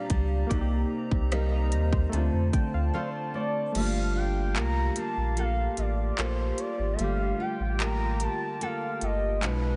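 Contemporary R&B with a longing, sensual mood, cut from a longer piece, where round analog keys, a hollow flute-like pad with chorus and fingerpicked nylon-string guitar with tape echo sit over a deep sine sub bass and crisp trap drums with a hard-clipped kick, pausing for a break at 2.9 seconds before a smooth, gliding portamento lead with vibrato enters at 3.0 seconds and the kick drops out from 3.7 seconds under a Gm9 chord, all in a lightly reverberant space.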